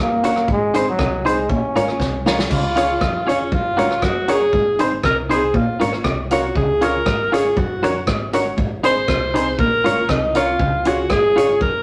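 A straight 4/4 pulse at 119 BPM drives this bouncy, joyful ska passage in Db major, cut from a longer piece. A swinging big-band drum kit with a punchy kick, medium-tuned snare, rim click, hi-hat and crash sets the groove. A round, dark fingered electric bass sits in the background, and a warm semi-hollow electric guitar plays a picked riff coloured by tape echo. A twangy, compressed clean electric guitar adds bright accompaniment, while a jangly, metallic tack piano adds stabs from the background. Up front, a clear trombone with vibrato carries the opening melody, and after a drum fill at 2.0 seconds a smooth-topped alto saxophone takes a solo from 2.5 seconds to the end. The chords cycle through Ab, Bbm, Db and Gb, and a small, wet room reverb surrounds the band.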